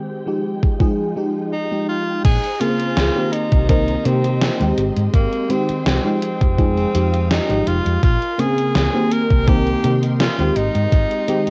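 Nostalgic and melancholic, this vaporwave cut from a longer piece moves at 83 BPM in F minor, with a filter sweep over the opening as a lush, dreamy FM electric piano with a soft pad layer, coloured by phaser, chorus and cassette tape, and a silky string machine in the background, wrapped in ensemble chorus and tape, carry the Fm9, Bbm9, Cm7 and Abmaj7 changes. An overdriven, thumpy electronic kick sits up front from 0.6 seconds, and a breathy, whispered tenor saxophone with light vibrato and tape echo takes the intimate solo melody from 1.5 seconds. At 2.2 seconds a dark, round hollow-body electric bass arrives alongside a gated 80s drum machine whose snare, hi-hat and crash are overdriven and soaked in gated reverb, all heard through the low-pass haze of a home cassette recording.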